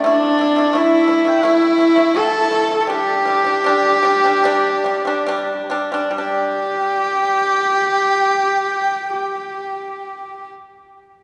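Mongolian folk in a proud, galloping 4/4 at 66-88 BPM, cut from a longer piece, where a nasal, husky horsehead fiddle carries the melody up front with light vibrato and portamento, a buzzing, airy large dizi adds a softer second line, and a mellow, percussive pipa plays fingerpicked arpeggios, the music slowing through the first 6.1 seconds before a new section begins, all heard in the long, wet reverb of a church.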